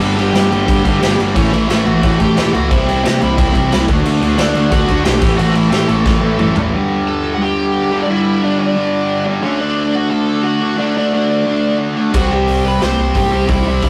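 Captured as a rough rehearsal-room recording with light reverb and warm saturation, this punk rock excerpt from a longer piece sounds energetic and rowdy at 178 BPM in a straight 4/4. The raw garage drum kit sits up front, gritty and pumping in a bright stone room, with a punchy kick, a medium-tuned snare, and crash, hi-hat and toms under a rolled-off top. Two distorted rhythm guitars drive the riff together: a tight, bright one up front and a sludgy overdriven one further back. A very quiet, dark, double-tracked semi-hollow guitar and a growly, amped picked bass play alongside them over G, A, C and D until a drum fill lands the groove into half time at 6.7 seconds on G5, D and C. Across the whole excerpt the dark, high-gain lead guitar carries the melody, and the bass and drums return at 12.1 seconds.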